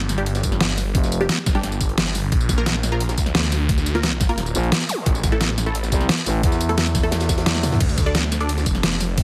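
A swirling, phased detuned saw bass opens this tense, aggressive passage of dark technical drum and bass at 175 BPM, alongside an overdriven, up-front dubstep drum kit and a very quiet, gritty breakbeat kit, with a knocking electronic kick arriving at 0.4 s, a muted, filtered dub chord stab with sampler grit and dub echo sitting in the background over G5, Bb, A5 and Dm, a growling FM bass that flickers in early and returns at 4.5 s, a brief electronic zap, and a drum fill at 7.5 s, in a dry, heavily compressed radio-like mix.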